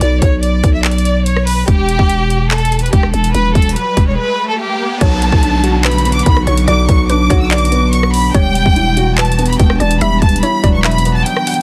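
A lush, vibrato-rich violin section carries the melody from the first second, riding over a growling, buzzy 808-style bass and a hard-hitting trap kit of clipped kicks, metallic hi-hats, handclaps and rim clicks, all set in a brooding, menacing B minor at 144 BPM with a half-time feel. The strings sit up front with a focused, smooth top, while the bass decays after each note and shares the foreground. From 2.7 seconds a riser and downlifter sweep quietly in the background, leading through a short break into a fuller second section at 5.0 seconds. There a soft, felt-muted upright piano adds boxy, intimate accompaniment with audible action noise, joined by a woody, round mallet-like synth pluck treated with chorus and delay. A very quiet, warbling tape-like pad enters at 5.7 seconds with nostalgic, lo-fi sustained chords. The mix is dry and dense, with a heavily limited modern master, and this excerpt cuts off mid-piece on an Emadd9 chord.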